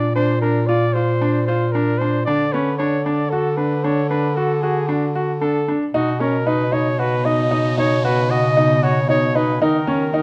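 In a straight 7/4 pulse, this hopeful, restless contemporary chamber piece, cut from a longer work, sets a breathy, mellow flugelhorn melody with jazz-style vibrato over open, long-sustaining grand piano arpeggios and a soft-attacked bass clarinet line in classical style, those three sitting up front in a moderate recital hall, and at 6.7 seconds a bright, detuned wavetable pad morphs in with sustained chords through phaser and its own reverb.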